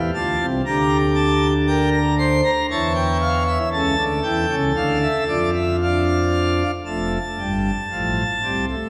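A pipe organ on a full plenum opens at once on a D minor chord, sounding brilliant and up front with bright mixtures and a romantic voicing. This short cut from a longer baroque-style four-part fugue moves at a slow 58 BPM in a straight 4/4, tuned to A4 = 441 Hz, with a contemplative, solemn mood. The solo organ spans from a deep F1 up to C6, passing through Gm/D and A/E before settling back on D minor. At 6.8 s the music turns to a new passage on an Fadd9 chord, which carries through to the close at 8.9 s. A wet church reverb with a long 3.3-second decay surrounds the instrument and gives the sound a spacious, resonant character.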